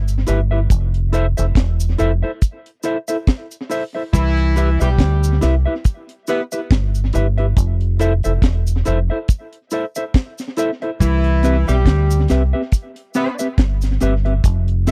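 A dry, close 1970s-style studio sound frames this sunny, uplifting roots reggae passage, cut from a longer piece, with a round, dark fingered electric bass and an acoustic drum kit up front, its high-tuned snare and tight kick touched by tape echo, while a faint cabasa sits underneath. A mellow, clean electric guitar carries the accompaniment with subtle chorus and tape echo over chords moving between Cmaj7 and Fmaj7. At 4.1 s a punchy horn section enters with a second line in octave doubling, its smooth top and light vibrato also carrying tape echo, until 13.3 s.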